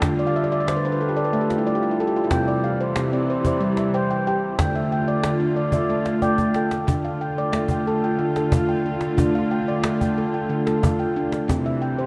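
Set in a straight 7/8 at 183 BPM in D minor, this hypnotic, meditative world excerpt centres on a bright, ringing handpan playing up-front arpeggios and an opening fill from 0.2 seconds, over soft-attack sul tasto string chords with light vibrato and a woody cajon with faint snares that adds a fill at 6.2 seconds before dropping out at 11.6 seconds, all bathed in a wet cathedral reverb.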